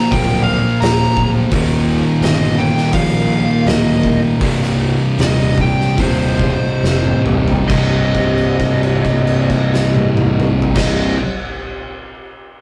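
Brooding and sludgy, this stoner and doom metal excerpt in C minor crawls at 67-86 BPM through Bb, Eb and Cm, with a fuzzed lead guitar melody over two thick fuzz guitars and a biting, double-tracked overdriven guitar riffing low, a growly fingered bass with tube saturation, an oversized low-tuned drum kit with a boomy kick and fat snare, and a very quiet, ominous detuned drone holding sustained chords, as the tempo slows from 1.5 seconds until a drum fill leads into a held note at 7.7 seconds, captured as a rough rehearsal-room recording with stone room reverb.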